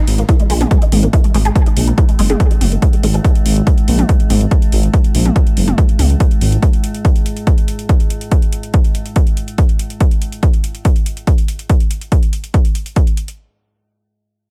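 A punchy, up-front electronic kick drives this short excerpt of peak-time techno at 142 BPM in a straight 4/4, joined by a layered techno kit with metallic hats and toms pumping against the sidechain. A dark detuned saw bass rumbles deep beneath from 0.1 s to 6.6 s, its saturated unison voices beating against one another. Over the opening seconds a juicy, squelchy blip pluck plays a bright, resonant riff through phaser, tube saturation, ensemble chorus and digital delay, while a filter sweep moves across the synth arpeggio until 3.2 s. From 1.3 s an eerie FM drone with a slow attack and long release hangs low in the mix, its inharmonic shimmer thickened by chorus and its own reverb. The overall sound is dry and loud, keeping the mood hypnotic and relentlessly driving.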